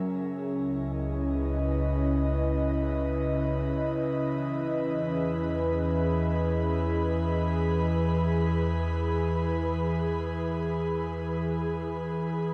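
A huge, wet reverb with a long 7.2-second tail surrounds this serene ambient excerpt in free time and E major, cut from a longer piece. An airy, breathy analog synth pad sits up front with chorus and shimmer reverb, sustaining detuned sawtooth-and-triangle chords laced with a noise layer and moving from C#m7 to E at 4.2 s under a filter sweep. From 0.7 s a deep, ominous drone rumbles beneath as the bass, its warbling, wave-folded vintage tone dark and steeped in its own reverb.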